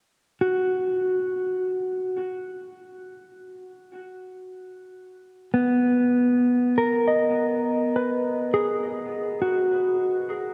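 Ambient in free time, this spacious, melancholic fragment from a longer piece features a mellow, dark, clean electric guitar played solo and up front from 0.4 to 10.5 seconds, its fingered, compressed tone ranging from B3 to D#5 over a B5 chord and trailing a diffuse ambient delay into a wet cathedral reverb of a vast, echoing space with a cassette tape character.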